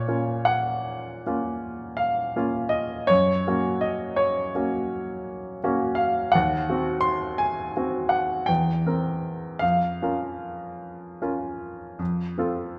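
A clear baby grand piano opens alone, playing a melancholic romantic nocturne in Bb minor that carries through the full 12.8 seconds of this fragment from a longer piece. The tempo sits around 46-57 BPM, counted in dotted quarters, in a 9/8 metre shaped by rubato. The piano sounds natural and up front, its notes having a short sustain and ranging from Eb2 to C6. A recital hall reverb wraps the instrument in a lingering, wet space. The harmony moves from Bbm to Gb, then through Cdim/Eb and C7/E before settling on Bbm/F and arriving on F at 12.0 seconds, giving the passage a mournful, unresolved close.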